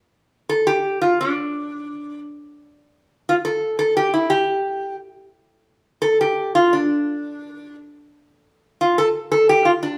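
A straight 2/4 pulse at 87 BPM sets a steady step for this short cut from a longer Andean folk piece in D minor. A metal-body resonator slide guitar carries the music alone, entering at 0.5 s and playing through to 10.0 s within a compact range from D4 to A4. Played with fingerpicks and a slide, its acoustic tone is metallic and nasal, and it sits up front in the mix. The mood balances festive brightness with a wistful edge. The performance was captured live in one room, and a wet stone-room reverb with a decay of 1.1 s lends the guitar an echoing, chamber-like sense of space.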